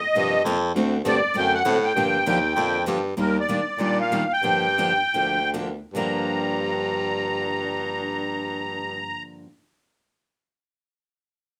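Virtuosic and fiery, this short excerpt of acoustic string swing in the gypsy jazz manner moves in G minor with a swung 4/4 feel, its tempo ranging from 138 to 199 BPM and slowing down between 3.2 and 5.9 seconds. A reedy musette accordion carries the melody up front, its musette tuning giving a shimmering edge. Beneath it a clear baritone saxophone plays the bass line in a jazz style, up front and present, with vibrato, a soft attack and scooped notes. Two picked steel-string acoustic guitars supply the accompaniment. One sounds brilliant with fresh strings, while the other sits darker in the background with audible finger squeak. Over chords such as C7sus4, D7, Gm7 and Ebmaj9, the group passes through three sections in a moderate studio reverb.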